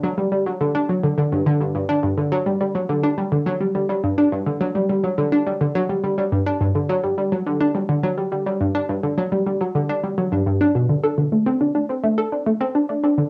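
Luminous and expansive, this ambient fragment at 105 BPM in a straight 4/4 features a solo analog pluck, round and sawtooth-edged with a noise layer, filter sweep, fast attack and decaying tail, sitting up front and treated with chorus, delay and cassette tape color across a range from G2 to A4 in a wet, homemade cassette-recorded space, moving into a new section at 10.9 s before the cut at 13.2 s.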